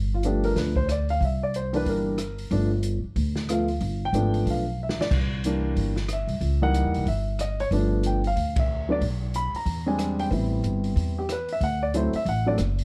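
Jazz piano trio in G major swinging at 185 BPM with a relaxed, playful mood, where a woody upright piano carries the melody up front over plucked upright bass and a boomy-kicked drum kit whose dark cymbals sit in a small room, with a drum fill at 4.8 seconds and a band accent at 8.5 seconds in this dry excerpt from a longer piece.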